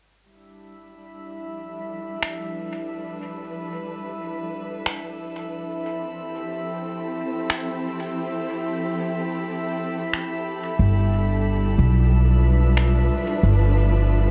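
A dark, warm studio ambience frames this hazy, peaceful ambient dub excerpt in G mixolydian, moving at 91 BPM in 4/4 with a 59% swing on the sixteenths. A lush, bowed symphonic string section fades in from 0.3 seconds, holding expressive sustained chords with vibrato and a smooth top as the harmony moves from G9 to Fmaj9 and back to G9. Just above it, a glassy texture of drifting sine overtones swells in slowly and lingers with a long release, softened by chorus and its own reverb. From 2.2 seconds, up-front electronic finger snaps mark the groove through studio reverb and dub echo. At 10.8 seconds, a woody, thumpy upright bass on steel strings arrives, its pizzicato notes sitting low and close.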